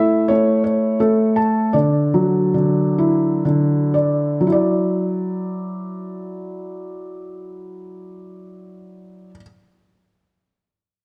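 A felt-muted upright piano plays alone from the start, mellow and intimate, set up front with its action noise audible, in this tender, innocent children's lullaby in D major and 3/4 time. The rubato tempo moves between 56 and 87 BPM and slows over the first 4.5 seconds as the harmony shifts from A to Dadd9, and a new section begins at 4.5 seconds. The piano spans D3 to A5 and falls silent at 9.4 seconds, set in a moderate scoring-stage reverb within a dark, warm production of this excerpt cut from a longer piece.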